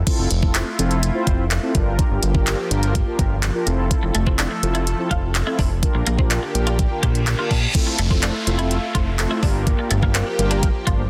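Dance-pop at 125 BPM in F major with a carefree, euphoric mood, this short cut pairs an up-front, overdriven pop drum kit with a knocking kick, handclaps, hi-hat and crash to a fat, detuned sawtooth bass and mellow synth brass, both pumping under sidechain, while a lush unison pad with chorus and phaser glows in the background, a clean, picked twelve-string electric guitar riff shimmers in from 4.0 seconds, and a reverse cymbal at 7.1 seconds leads into a fresh section over Fmaj7 and Gm7, all sealed in a dense, heavily limited modern master.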